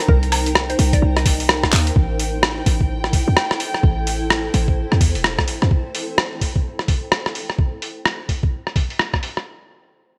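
UK garage in a bouncy, late-night two-step groove at 128 BPM in A minor, this excerpt opens on a drop over Cm7 with a gut-string violin section holding filtered, pumping chords in the background, a blurred granular cloud pad, a woody, chorused mallet-like pluck melody with delay from 0.1 to 1.8 seconds, and a punchy, short 808-style bass, while a thumpy, gritty electronic kick and a tape-warm boom bap kit of handclaps, filtered hi-hats, rim clicks and woodblock sit up front, with a drum fill at 1.7 seconds leading into an Am7 section at 2.0 seconds, all in bright 1980s-style digital production with light reverb.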